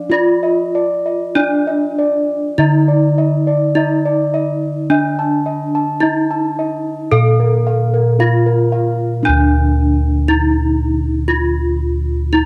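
In a straight, unhurried 4/4 at 48-58 BPM, this hypnotic, stately Javanese gamelan fragment in D pelog sets a bright, ringing bronze metallophone melody, struck with a horn mallet and shimmering from its paired tuning, over a mellow, round bossed-gong bass played with padded beaters, while a higher set of bossed gongs adds boxy arpeggios from 0.1 to 9.0 s, with the metallophone and arpeggios both carrying plate reverb inside a small-room home cassette recording.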